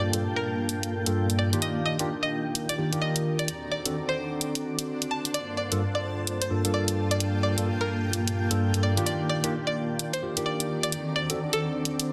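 A twangy, string-like resonator pluck carries the melody from the first moment, warbling through chorus, phaser and dub echo over a smooth analog pad, a cloudy granular pad that keeps evolving, and barky tine electric piano stabs heard through a combo amp, low-pass filtered and swept across the whole piece. This is a moody, late-night UK garage cut in G minor at 129 BPM, with a swung two-step feel and an up-front, tape-warm electronic hi-hat entering at 0.1 seconds, as the harmony moves from Gm9 through Ebmaj7 to D7. The sound is dense and heavily limited, with the electric piano sitting loudest in the mix, all set in a moderate plate reverb with digital ambience.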